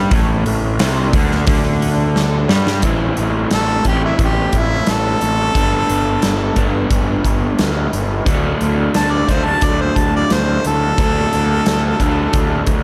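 A raw, double-tracked garage guitar riff with lo-fi overdrive opens this smoky, gritty blues rock and southern rock excerpt, joined at once by a growly, fuzz-soaked picked bass sitting up front and a huge arena drum kit with a punchy kick and medium-tuned snare. After a drum fill around 2.2 seconds, a bright, close-miked harmonica enters at 3.5 seconds for an up-front solo with light vibrato and an overdriven edge. The harmonica rides over a straight groove moving from Am to G to D, all in a dry, tight room.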